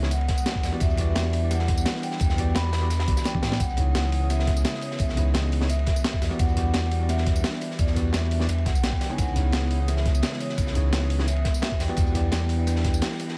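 A dreamy, lush liquid drum and bass excerpt opens with a mellow, ringing vibraphone melody played with soft mallets and motor vibrato over a bell-like, clean tine electric piano, both carrying tape echo, while an airy, breathy pad with chorus and sidechain pumping sustains C#m9 and Em9 chords in the background. Underneath, a deep, round sine sub bass sits up front, joined from 0.3 seconds by a thumpy, compressed electronic kick. Two breakbeat kits drive the groove: a gritty, sampler-style kit of hi-hat, snare, tambourine and toms, and a crunchy, saturated kit with dark ride cymbal and a rolled-off, high-pass-filtered snare, with a drum fill at 3.3 seconds in an echo-heavy small-room mix.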